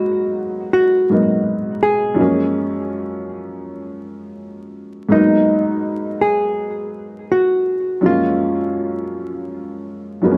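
Hip hop at 82 BPM with a swung sixteenth-note feel in G# dorian, this short, reflective and nostalgic excerpt cycles between G#m9 and F#maj9 under vinyl crackle and a moderate studio reverb. A dark, clean hollow-body jazz guitar carries the fingered melody up front until 9.5 seconds, filtered to a muted tone. Beneath it, an upright piano plays accompaniment through a low-pass filter, sounding worn, woody and slightly detuned, with a boxy short sustain and audible action noise that make it feel intimate.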